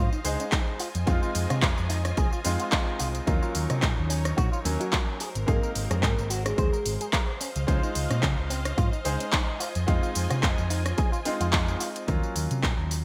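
This sleek, sensual nu-disco excerpt opens straight into a drop, with a bright grand piano accompanying with a short, brilliant sustain, carrying vintage 12-bit sampler grit, sidechain pumping and digital delay. Beneath it, lush bowed symphonic strings hold sustained chords with biting vibrato, sharing that gritty, pumping treatment but sitting in the background. A clean, twangy electric guitar through an envelope filter repeats a picked riff behind them, dressed in analog chorus and delay, while a dark, round hollow-body bass anchors the low end. An overdriven house kit of handclaps, hi-hat, rim click and tambourine, with gated reverb and a large-room sound, is joined at 0.5 seconds by a punchy, up-front electronic kick over a lightly swung groove. From 4.8 to 7.2 seconds a soft, full-bodied synth lead layered with a sub octave adds a brief melody through chorus, phaser, cassette-tape color and delay, all over lush Dbmaj9, Fm7, Ebm7 and Ab9 harmony in a glossy 1980s-style digital mix.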